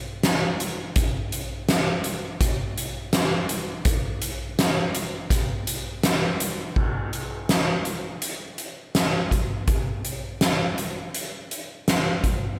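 A soft-mallet drum kit carries this brief rock fragment on its own, entering at 0.2 seconds and playing until 12.4 seconds. Mallets replace sticks on both drums and cymbals, softening the crash and hi-hat, while the snare sounds fat and the kick boomy. The mood is melancholic and brooding, set in a straight 4/4 feel at an unhurried pace. The kit sits up front in the mix, yet a moderate concert-hall reverb gives it the size of a big room and a lingering tail. Cut from a longer piece, the passage moves into a new section at 6.8 seconds.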